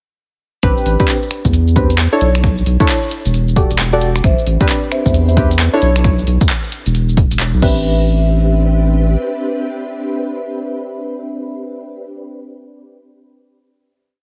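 A saturated, thick sub bass sits up front in this moody, late-night two-step UK garage piece at 133 BPM in A minor, skipping through a syncopated line beneath a tape-warm electronic kick and a punchy analog drum machine of swung hats, rims, snaps, claps, shaker and crash. Dark, softly chorused chord stabs with digital delay and a filter sweep move through Am11, Bm11 and Em11 across the drop, while from 4.2 seconds a mellow vibraphone with soft mallets and tape echo rings out a repeating riff in thirds and sixths, joined by a silky vintage string machine pad with ensemble chorus and sidechain pumping. The drums fall away around 7.8 seconds for a final hit, and the bass follows at about 9.2 seconds, while the stabs, vibraphone and strings carry on, all under light reverb and a heavily compressed, radio-like sheen.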